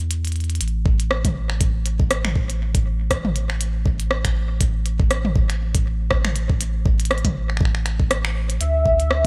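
IDM with a cerebral, glitchy mood, moving at 120 BPM in 4/4 with a light swing on the sixteenths, cut from a longer piece. A deep, round sine sub bass sits up front from the start, sustained and mellow, while a glitchy electronic kit of finger snaps, clicky hi-hats, rim clicks and toms plays through a tape echo. At 0.9 seconds a sampler-style kick drum enters, compressed, pitched up and gritty, with a thumpy, tape-tinged body from being re-recorded in a small room. At 8.6 seconds a velvety synth lead arrives on a high E, full-bodied and smooth with detuned unison sawtooth and triangle tones, chorus and vibrato, as the harmony settles on Dsus2. The sound is close and dry, with little reverb.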